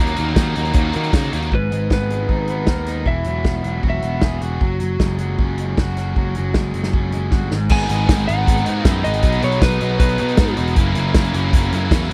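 Indie rock at 156 BPM in G# minor, moody and restless, with a punchy, up-front acoustic drum kit and a growly picked bass driving under a raw overdriven garage guitar riff, alongside a scooped high-gain guitar riff with analog chorus and a dark, round tonewheel organ on slow rotary holding very quiet sustained chords, both of which drop out from 1.5 to 7.7 s while a compressed, slightly broken-up lead guitar carries the melody from 1.5 to 4.4 s, with a drum fill at 7.3 s and a dry, close 1970s-style studio sound.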